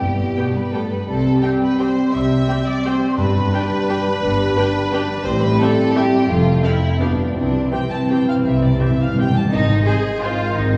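A warm, vibrato-rich violin section carries the melody from 0.4 seconds, sitting back in the blend of this elegant, sweeping orchestral ballroom waltz in 3/4, played with uneven beats and a rubato feel. A second violin section with a rich, smooth tone shares secondary lines alongside a clear solo clarinet and a mellow, hollow flute group with crisp attacks. A mellow bassoon and a rich chamber viola section fill the accompaniment, while a distant French horn section holds sustained chords. Beneath them, a lush, expressive cello section and a bowed double bass section form the bass, and a concert harp adds ringing thumb-plucked arpeggios. Timpani struck with soft mallets give round accents and a fill from 7.3 to 9.5 seconds before the harmony shifts to A-flat, all heard from further back in a wet concert hall reverb in this cut from a longer piece.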